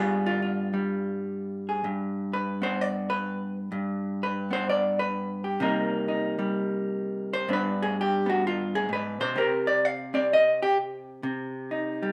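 A clean, picked hollow-body electric jazz guitar opens this moody, late-night solo jazz excerpt, sitting up front in the mix from the first second to 12.1 seconds. The guitar plays alone throughout, ranging from G2 up to F5, in C minor at a swung 128 BPM in 4/4, tuned slightly sharp to A4 = 443 Hz. The harmony moves from G7 to Cm7 at 5.6 seconds, touches G, and settles on Cm as the opening phrase returns at 9.3 seconds. The vintage instrument carries a warm character, placed in a moderate reverb from a large studio that lends the lone line some air. Cut from a longer piece, the recording is quiet and intimate in level.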